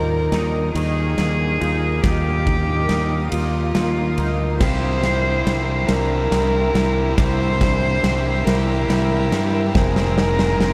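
A slow 6/8 pulse at 47 BPM carries this melancholic, cathartic post-rock excerpt in C minor, where a huge arena drum kit enters at 0.3 s with a punchy kick, bright cymbals and a building fill under a growling, overdriven fingered bass up front. A rich, earthy cello with light vibrato sings the melody through diffuse delay, backed by tine electric piano arpeggios, a very quiet shimmering pad and twangy chorused guitar arpeggios that give way at 4.6 s to a bright fuzz guitar riff. The harmony moves from Ebsus2 to C7 and on to Fm7 at 9.7 s, all bathed in a dreamy cathedral reverb.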